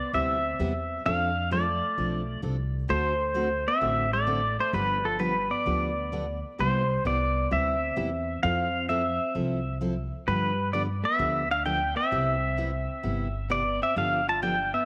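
Swung eighths at 130 BPM in 4/4 drive this playful, cheerful western swing excerpt in C major, where an up-front, twangy pedal steel guitar carries the melody with fingerpicked slide lines and volume swells, a dark, clean hollow-body jazz guitar adds a second line beneath it, a full-bodied dreadnought acoustic guitar supplies picked accompaniment, and a woody, thumpy pizzicato upright bass anchors changes that move from Cmaj7 through F6, D7 and G7, all set in a moderate echo chamber reverb.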